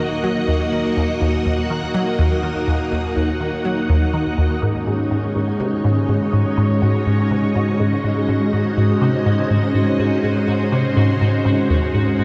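A squelchy, resonant blip pluck drives this mysterious, expansive stretch of ambient space music at 123 BPM in 4/4, its bright, up-front riff coloured by phaser, subtle chorus and analog delay. Alongside it, a lush, up-front string machine ensemble holds full-bodied, vintage sustained chords with ensemble chorus and shimmer reverb, moving from Ebm to Absus4 at 4.6 seconds. A pulsing, tempo-synced gated texture fades in from the background throughout the excerpt, all within a dark, huge reverberant space.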